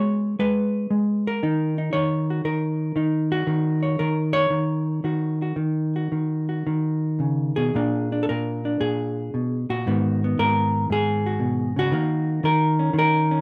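A lightly reverberant room frames a short, moody solo jazz piece cut from a longer performance, with a hollow-body electric jazz guitar sitting up front, its clean, dark, fingered tone carrying the whole 13.4 seconds alone. The playing swings in 4/4 yet stretches time with a rubato feel, moving through Abm7, Ebm7, Bb7 and Abm7 before settling back on Ebm7 near 11.9 seconds.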